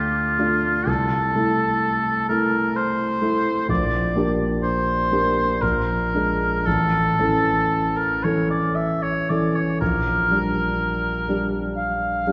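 Set back in a wet concert hall with a long 2.2-second reverb, this yearning, solemn romantic classical duo, cut from a longer piece, moves in a rubato 3/4 at roughly 56-65 BPM as an oboe with vibrato sings the melody over an intimate, vintage-toned grand piano whose deep bass and audible action noise carry harmonies from D minor through Bb7 and A major back to Gm/Bb across its 12.3 seconds.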